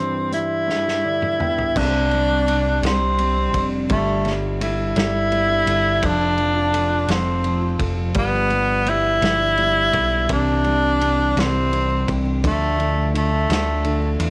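A heartfelt, tender six-eight pop ballad in C major at a slow 56 BPM, cut from a longer piece, where a clear, roomy tenor saxophone with light vibrato carries the melody over a concert grand piano with audible action noise and long sustain, a loose, gritty indie drum kit entering at 0.3 s with a drum fill and piano fill together from 0.7 s, and a very quiet fingerpicked dreadnought guitar with finger squeak joining a round, dark dub electric bass at 1.8 s, all bathed in moderate spring reverb as the chords move from Csus2 through F and G7 to Dm.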